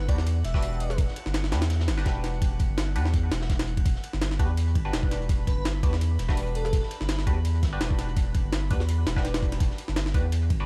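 Atmospheric and raw, this drum and bass excerpt with a jungle edge sits on a single Em7 chord. Up front, a gritty, pitched-up sampler-style kit with a thumpy kick, high-tuned snare and ride drives the groove over a deep, thick saturated sub bass, while a crunchy acoustic breakbeat kit with hi-hat and snare sits in the background. Nasal band-passed chord stabs with phaser and dub echo punctuate the loop, a glassy drifting harmonics texture hovers high, and an airy, dreamy lead with chorus and vibrato surfaces briefly at 0.1 and again at 5.5 seconds, all in a dark, dry production laced with vinyl crackle.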